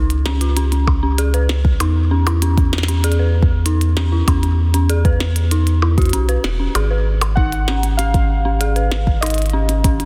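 Wistful and intricate, this IDM fragment moves at 97 BPM in a straight 4/4, anchored by a round, up-front analog bass and a deep electronic kick that arrives at 0.9 seconds. A glitchy kit of clicky hats, percussion blips and a tiny, softly clipped snare sits lower in the mix with studio reverb and tape echo, while an eerie, inharmonic FM bell spins detuned arpeggios through chorus, delay and 12-bit sampler grit. At 7.4 seconds, warbling lo-fi synth keys with a nostalgic, sawtooth-tinged tone take up the melody over an Ab5 harmony, all within a dense, heavily limited master with little room sound.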